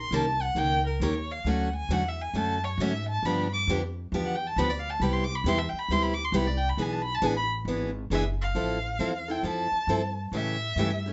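Acoustic string swing in the jazz manouche style, this charming, swinging passage cut from a longer piece features a rich bowed violin carrying the melody with expressive vibrato and portamento, taking a solo through the first 8.6 seconds. A woody, thumpy upright bass on gut strings is plucked beneath it, while a bright picked steel-string acoustic guitar with fresh strings and audible finger squeak enters at 0.1 seconds to comp through changes such as Dmaj7, G7, Cmaj7 and E7, moving to Fmaj7 at 8.6 seconds. All three players sit up front in a moderate studio reverb, with nothing heard above 7.8 kHz.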